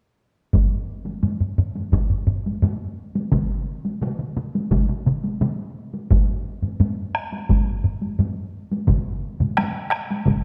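Powerful and ceremonial, this excerpt of Japanese traditional taiko drumming moves at a straight 86 BPM in 4/4, with a solo taiko drum and three taiko ensemble parts all struck with heavy sticks and placed up front, one ensemble captured in a live room and two close and dry, the last of those entering at 3.3 seconds, all set in a dark production with a moderate scoring-stage reverb.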